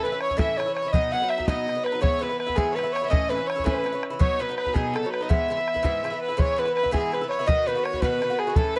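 A mellow soprano saxophone leads this lively, cheerful Celtic jig, carrying the melody up front with vibrato, a smooth top and a classical poise, while a clear fiddle plays a second line in the same register and an Irish bouzouki supplies picked accompaniment beneath. The damped, tight bodhran joins at 0.2 seconds, sitting close and dry near the front and driving the straight 6/8 pulse at 110 beats per minute in dotted quarters. The saxophone carries a slapback echo, and the single bowed fiddle adds an airy, intense, somewhat boxy colour with light vibrato. The acoustic bouzouki, with its doubled strings, sounds metallic yet warm as it moves through an E major progression of A, B and E chords. Recorded in a close 1970s-style studio with little reverb, this short cut from a longer piece repeats its opening strain from 6.4 seconds before ending at 8.8 seconds.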